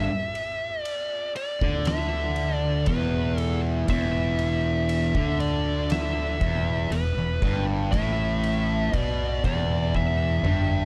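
A slow, straight 60 BPM pulse in 4/4 drives this sludgy, brooding stoner and doom metal excerpt in E minor, where a double-tracked, compressed fuzz guitar riff sits up front over a growly, overdriven fingered bass, an oversized low-tuned drum kit with a punchy kick, fat snare, ride and toms rings in a bright stone room with a gritty, rolled-off top, and a dark, picked fuzz lead guitar carries the melody through digital delay as a drum fill closes the excerpt from 9.9 seconds, all within a warm studio ambience.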